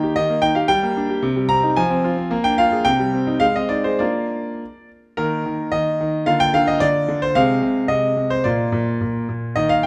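A clear concert grand piano opens alone on an E-flat chord, setting a cheerful, graceful classical-period sonatina in 2/4 at roughly 101-113 BPM with a flexible, rubato feel. The solo piano spans Bb2 to Bb5, its deep bass and smooth, slightly vintage tone sitting up front in close, detailed microphones with light reverb. The opening phrase moves through G minor, C minor, F minor and a B-flat seventh before settling on B-flat around 4.0 seconds. A second section begins at 5.2 seconds, stepping from an E-flat fifth through B-flat over D and A-flat over C back to B-flat. This brief passage is cut from a longer piece and ends at 9.9 seconds.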